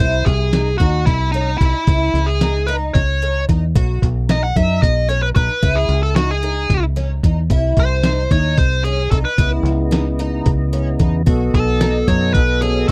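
In a straight 7/8, this tense, brooding progressive instrumental is cut from a longer piece, with a bright, overdriven lead guitar soloing up front over shimmering, octave-doubled arpeggios from a woody, boxy twelve-string acoustic treated with ensemble chorus and tape echo. A foam-muted fingered electric bass sits warm and forward, while a compressed, pitched-down, muffled sampler-style kit joins at 0.3 s with a thumpy kick and medium-tuned snare carrying the air of a large room. At 9.4 s a fat, lightly driven tonewheel organ with key click, chorus vibrato and a slow rotary speaker enters, all within a dry, close 1970s-style studio sound.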